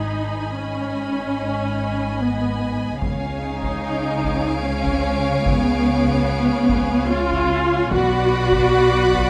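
A dark, up-front viola section carries the accompaniment in this mysterious, tense cinematic suspense excerpt in 3/4, beneath a vibrato-laden violin melody, a rich second violin line, and a bass of close cello and soft-attack double bass sections, while at 3.0 s a distant taiko ensemble struck with hard sticks and a smooth-topped violin texture join in the background, all set in light reverb.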